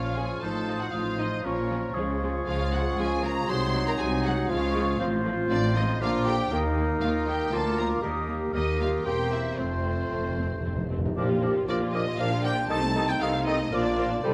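In a brisk 3/4 at 118 BPM with a straight feel, this graceful, cheerful classical-period movement for symphony orchestra settles into Bb major from 5.0 s. Its violin section carries the melody with vibrato and expressive portamento, while a second violin section, a clear clarinet and an airy flute ensemble weave supporting lines in the background, joined by a mellow oboe. Beneath them, a soft-attacked bassoon and a very quiet, rich viola section fill in the accompaniment, a French horn section holds sustained chords, and cellos and lush double basses anchor the bass. Round, soft-malleted timpani add a fill from 9.6 s, all set in a moderate concert hall reverb captured with close, detailed microphones, in a passage cut from a longer piece.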